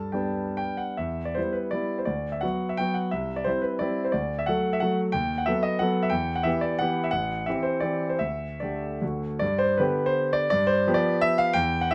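Dotted rhythms drive this romantic triple-time dance in 3/4, its pulse bending with rubato anywhere between 127 and 193 BPM. A single concert grand piano carries the whole piece in G major, ranging from A1 up to A5 with a warm tone and deep bass, and the mood is rustic and graceful. Close, detailed microphones place the piano up front with a natural sound, while a moderate large-studio reverb adds a touch of space around it. The opening theme gives way at 1.0 seconds to a contrasting passage that moves through E minor, C, a B7 over D sharp and a suspended D before resolving. The opening material returns at 9.4 seconds, settling on G and then G7 as this brief extract, cut from a longer piece, ends at 11.9 seconds.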